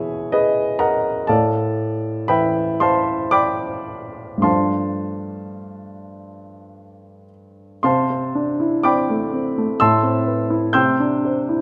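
Freely rubato in a gentle three-beat lilt, this serene, hazy fragment of impressionist classical music, cut from a longer piece, features a solo grand piano that sounds warm, polished and present, placed up front with a short sustain. It drifts through lush extended harmonies, from Emaj7/B and Amadd9 to G9sus4, then settles into a new passage at 7.8 seconds on C69 before closing on Cadd9. A wet recital hall reverb wraps the piano, lending the brief passage a soft, luminous glow.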